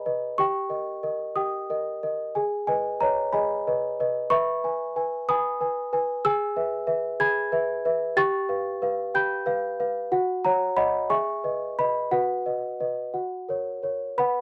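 Tender and dreamy, this classical lullaby in G# minor sways gently in 6/8 at 61 BPM, with a small celesta playing alone throughout, its bell-like, sweet tone sounding delicate and up front from F#4 to A6, set in a dry, close 1970s-style studio recording with a touch of light reverb, as the harmony drifts from D#7/G through G#m, E/G# and G7 before settling on F# near 13.1 seconds in this short portion of a longer piece.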